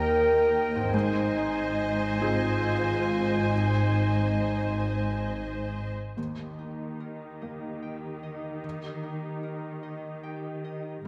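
In a rubato 6/8 at 45-50 BPM (dotted quarters), this tender, uplifting film-score excerpt in Eb major opens with veiled, con sordino violins carrying the melody over a dark muted second violin line, a bright vintage clarinet and a pure, distant silver flute. Beneath them, a mellow felt-muted upright piano with audible action noise, distant violas, warm French horns holding chords, and close, dark cellos and double basses fill out the sound, while a ringing fingerpicked concert harp enters at 0.8 s. By 6.2 s the winds, horns, violins and basses have fallen away, leaving piano, violas, cellos and harp in a lush, reverberant scoring-stage space.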